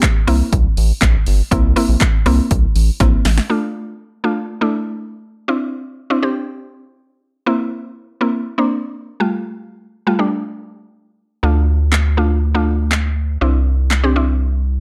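A woody, detuned mallet-like synth pluck with chorus and sidechain pumping carries this driving, bittersweet dance-pop excerpt at 121 BPM, over a round, deep analog bass that also pumps and a punchy, layered house drum kit of kick, snare, hi-hat and handclaps, whose fill at 3.0 s leads into a stretch where drums and bass drop out until the bass returns at 11.4 s and the kit at 11.9 s, the whole set in a dark production with light reverb.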